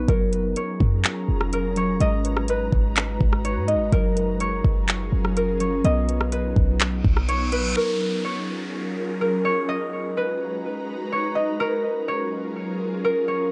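Atmospheric cloud-rap hip hop in F# major at 125 BPM with a half-time 4/4 feel, this blissful, floating excerpt opens with a fingerpicked, ringing concert harp melody carrying tape echo over an ethereal, detuned pad with ensemble chorus, while muted, felt-like synth keys arpeggiate in the background and a boomy, sine-like 808-style bass and a smooth R&B kit with a knocking kick, metallic hats, handclaps and rim clicks sit up front. The chords move through F#maj7, G#m7 and Bmaj7, and a reverse cymbal and downlifter arrive at 7.0 seconds, shortly before the drums drop out. From 7.8 seconds the bass and keys fall away, leaving harp and pad to drift on alongside the fading downlifter through a dry, gritty, cassette-toned recording with light reverb.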